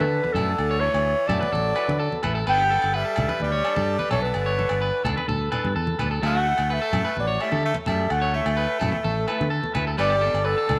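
A breathy clarinet carries the melody in this sunny, danceable highlife guitar band excerpt, its mellow subtone colored by a light vibrato and a jazz-inflected, vintage character. Beneath it, a raspy tenor saxophone plays a lower second line with a gritty, forceful pop edge, while a fingered electric bass sits up front with a warm, direct-and-amped presence. Two twangy electric guitars hover at the edge of break-up: one picked for chordal accompaniment, the other fingered in the background with arpeggios trailed by tape echo. Low-tuned, thin-skinned congas add bright, band-limited percussion, and ringing agogo bells join at 0.4 s from a distant, large-room space. The groove moves in a straight 4/4 at 128 BPM in D major, swaying between Dadd9 and Gadd9, all set in a moderate echo chamber blended with a small room.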